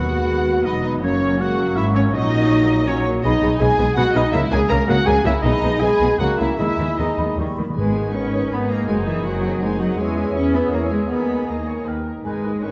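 In a quick 3/4 at 161 BPM, with a flexible, rubato pulse, this restless and dramatic classical-period orchestral passage settles into G# minor from 3.2 s. Muted violins carry the melody with a veiled, con sordino vibrato, while an airy flute ensemble, a punchy oboe, a very quiet, mellow clarinet and a second violin group weave supporting lines around it. Lush muted violas and a present bassoon fill in the accompaniment, and a dark French horn section holds tight sustained chords in the background. Muted cellos and double basses anchor the bass, the basses with a soft attack, and very quiet timpani with round calf heads add a fill at 7.4 s leading into a new section at 7.8 s. A wet concert hall reverb gives the whole orchestra a dark, warm sheen in this fragment of a longer piece.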